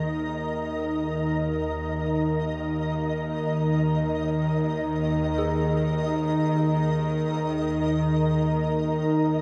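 Drenched in a huge, echoing reverb with an 8.3-second decay, this dark ambient drone unfolds in free time and feels vast and ominous, like a fragment cut from a longer piece. Up front, a deep, full-bodied analog pad holds sustained chords from Eb3 to Bb5, its detuned sawtooth and triangle layers thickened by a sub octave and chorus. Beneath it, a string-like, bowed-sounding drone sits between Eb2 and Eb3, tense and bright with vibrato, a noise layer and its own reverb. A flickering, granular texture hovers on Eb5, while a very quiet, eerie FM bell traces inharmonic, warbling arpeggios around Ab4 through chorus and phaser. Every part sounds from 0.0 to 9.4 seconds, resting on a single Eb5 chord for the whole passage.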